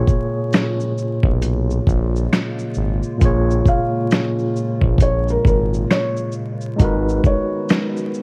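Melancholic and hazy, this slow lo-fi hip hop excerpt at 67 BPM in Bb phrygian pairs a gritty, overdriven sampler-style drum kit of thumpy kick, snare, hi-hat, shaker and finger snaps with a smooth synth bass and a barky tine electric piano up front, while a detuned, warbling pad with chorus and phaser hovers in the background from 0.7 seconds, a soft, felt-muted upright piano carrying the melody enters at 3.7 seconds with audible action noise, and worn tape warble and vinyl crackle hang over the whole mix as the chords move from Bbm7 to Abm7.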